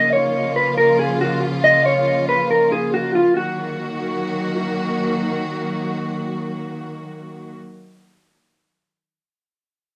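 Hard-hitting and brooding, this short hip hop fragment in Eb minor moves at 139 BPM in 4/4 with a half-time feel. A dark, clean electric guitar carries the melody up front, its fingered line filtered and softened with cassette grit and tape echo. Beneath it, a lush studio string section holds bowed, sustained chords, close and focused with vibrato. The harmony moves from Bbm to Ebm at 3.4 seconds. The guitar drops out at 4.6 seconds, leaving the strings to ring on until 7.6 seconds. A small room adds moderate reverb, and the home cassette recording gives the whole fragment a worn, intimate texture.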